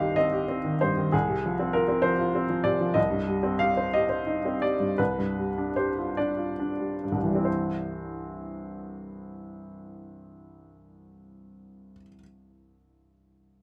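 In a rubato 6/8 at roughly 42-67 BPM, this romantic character piece for solo upright piano slows from 2.0 s as C minor harmony passes through F minor over C and G7 over C, then turns to C major when a new section begins at 7.5 s. The mood is passionate and bittersweet, with the piano spanning C2 to F5. Its woody, intimate tone sits up front under close, detailed microphones, with audible action noise and light reverb, and this short fragment is cut from a longer piece.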